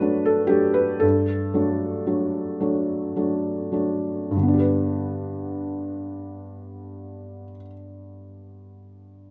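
A felt-muted upright piano carries this brief, tender fragment of neoclassical minimalist piano alone, sitting up front with a soft, mellow, intimate tone. Cut from a longer piece, it moves in a slow, rubato 6/8 at roughly 34-42 BPM counted in dotted quarters. It stays in G major, tuned to A4 = 439 Hz. The piano ranges from G2 to B4, opening over a D/G harmony and slowing down through its first phrase until 4.3 seconds, when it settles on G for a second, hopeful phrase that runs to 7.8 seconds. A moderate concert hall reverb surrounds the instrument, and the piano plays on until 9.3 seconds.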